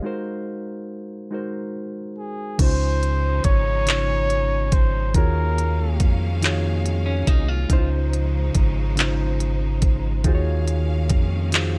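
A flugelhorn carries the melody from 2.2 s with light vibrato and scooped notes, played jazz-style through a delay, floating over this slow, sensual six-eight R&B groove in Db major at 47 BPM. A reedy, clean electric piano opens alone on an Ab9 chord before a round, deep analog bass, a produced drum kit with a knocking kick, smooth hi-hats and handclaps, and a bright, lush bowed string section arrive together at 2.6 s, moving between Dbmaj9 and Ebm11. A clean, picked electric guitar adds a brief second line at 7.1 s, and the dry mix keeps the kit and bass up front.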